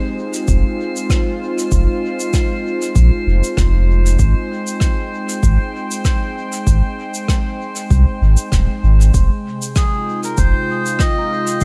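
A swung 97 BPM 4/4 groove of an overdriven electronic kick drum and a round, up-front sub bass from 0.5 s, with shaker and rim click carrying dub echo, anchors this spacious, meditative ambient dub piece in F minor, where a warbling, detuned analog pad with chorus holds Fm7 and Abmaj7 chords beneath a glassy texture of drifting overtones in a small room before a reedy, breathy melodica with dub echo enters at 9.8 s.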